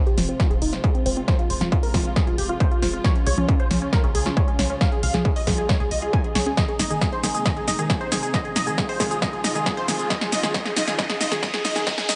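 Bittersweet and euphoric, this uplifting trance build-up, cut from a longer piece, sweeps filters across a detuned supersaw stab melody and a lush unison pluck arpeggio, both pumping against the beat with tape echo, while a phaser colours the up-front stab. Underneath, a tight sawtooth sequencer bass drives the low end as a dark, woody studio string section holds sustained chords moving through Fm, Db and Abadd9. An overdriven analog drum machine plays a drum fill of punchy snare, hi-hat and shaker over a distorted, layered electronic kick, and a very quiet riser enters at 8.3 seconds in a light reverb.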